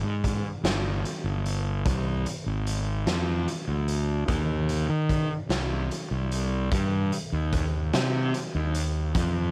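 Hypnotic and dark, this short psychedelic rock fragment, cut from a longer piece, moves in a slow, straight 6/8. A fuzz-soaked fingered electric bass carries the low end from the very start, its overdriven tone round and up front, ranging from G1 to Eb3. A raw garage drum kit joins at 0.2 seconds with hi-hat, kick drum and snare drum, sounding gritty and saturated, with a fat snare, a punchy kick and a rolled-off top. The kit sits close in a bright stone room, while the bass comes across direct and amped. The mix carries little reverb, keeping both parts dry and immediate through the single section until the drums stop at 9.3 seconds and the bass carries on to 9.5 seconds.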